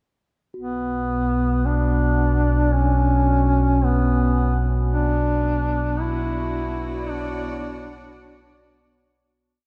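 Over a straight 4/4 pulse, this unsettling, desolate dark ambient drone piece rests on an ominous, rumbling low drone up front with lush chorus, while a warm, distant duduk with delay sings a free solo melody of scooped, vibrato-laden notes; a metallic bronze singing bowl with slow beating fades in behind them, and at 4.9 s a biting, earthy cello section enters softly with slowly shifting bowed chords, all set in a dark production with wet cathedral reverb.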